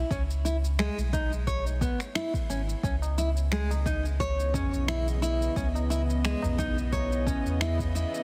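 Meditative and earthy, this organic downtempo excerpt moves at 88 BPM with a light 16th-note swing in C# minor, resting on a single C#m9 chord as an up-front, full-bodied nylon-string guitar fingerpicks arpeggios with audible finger squeak and digital delay over a round, deep sine sub bass with tube saturation and sidechain pumping. Overdriven electronic kick, layered shaker and finger snaps drive the groove, while a high-tuned, close and dry tabla joins in the background at 3.0 seconds. At 3.8 seconds a tense, detuned, string-like drone with vibrato and ring modulation swells in on sustained chords, all set in light reverb with a heavily compressed, radio-like sound.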